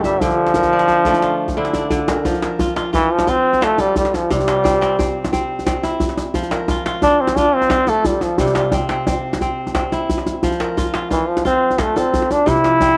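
A straight 12/8 pulse at 117 BPM, counted in dotted quarters, anchors this hypnotic West African traditional piece in F major, cut from a longer performance. A bright, punchy trombone carries the jazz-style solo melody with light vibrato and a vintage edge, while a ringing, crisp kora fingerpicks arpeggios and a tight, cracking djembe with metal rattles and soft hands keeps time. All three parts sit up front in a small room with light reverb, as the harmony moves from D minor at 0.2 seconds into a steady alternation of F and C.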